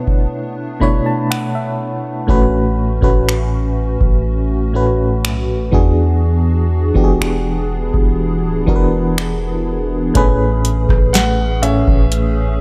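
A slow, straight 4/4 groove from a booming analog drum machine anchors this tender, romantic contemporary R&B excerpt, its deep kick, crisp snare, metallic hi-hats, rim clicks and finger snaps sitting up front, re-recorded in a small room. An FM electric piano with tremolo carries the accompaniment from the start, its mellow, decaying tone edged with a noise layer, and it plays a fill in the opening seconds as the harmony begins on Bm11. Beneath it, a hollow, flute-like pad holds soft sustained chords, its vintage, warbling character thickened by ensemble chorus. At 2.3 seconds a long 808-style bass arrives, a deep sine tone with a fast attack that decays under chords moving from A69 to E9. Near the close, at 11.1 seconds, a dark baby grand piano offers a brief high melody with long sustain, softened by a diffuse ambient delay, as the harmony rests on Amaj7 within a light reverb.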